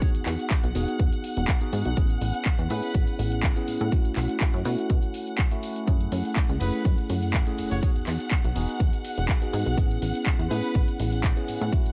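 A straight 4/4 pulse at 123 BPM drives this short, nostalgic and groovy cut of filtered disco house, with a punchy, tape-warm electronic kick sitting up front and an overdriven analog drum machine adding handclaps, hi-hat, ride cymbal and shaker, its hats, percussion and cymbals pumping against the kick. A plucky analog bass, funky and wave-folded with a fast attack and decaying filter pluck, sits up front from 0.1 seconds, pumping in the same sidechain motion. A bell-like tine electric piano carries the accompaniment throughout, bright and clean through a phaser, while a rich studio string section holds sustained, bowed chords with vibrato. A clear, smooth-topped trumpet section states the melody in two phrases, from the start to 3.1 seconds and again from 6.6 to 10.9 seconds, its notes trailed by digital delay. The harmony moves through Emaj7, Amaj7, B7sus4 and F#m7 before returning to Emaj7 and Amaj7, and the dry mix carries little reverb.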